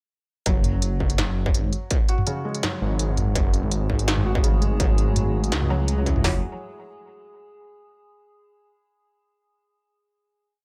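Heavy and tense, this short half-time drum and bass piece at 166 BPM in F# minor opens at 0.5 seconds with a felt-muted upright piano looping a soft, intimate arpeggio through a delay, a deep, rumbling detuned saw bass holding long notes up front, and two industrial drum kits heard in a small room, one driving a distorted kick with clanging snare and smooth hats, the other a sparse beat of closed hat, low tom and snare, before a moody analog pad with subtle chorus and sidechain pumping enters in the background at 3.4 seconds and an eerie metallic drone holds a high note from 3.8 seconds, the whole piece closing on a final chord.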